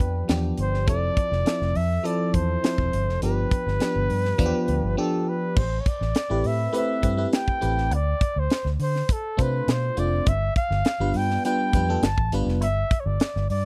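Bittersweet and urban, this polished 1980s jazz-funk pop clip at 102 BPM sets a breathy, whispered flugelhorn melody with vibrato over a glassy, bell-like FM electric piano treated with phaser and subtle chorus that drops out at 12.6 s, a dark, round, foam-muted fingered bass, and a tight funk kit with a high-tuned snare, all captured in a dry, close studio sound as chords move from G7 and Fmaj7 through Am9 and Dm7 to a rootless C/G.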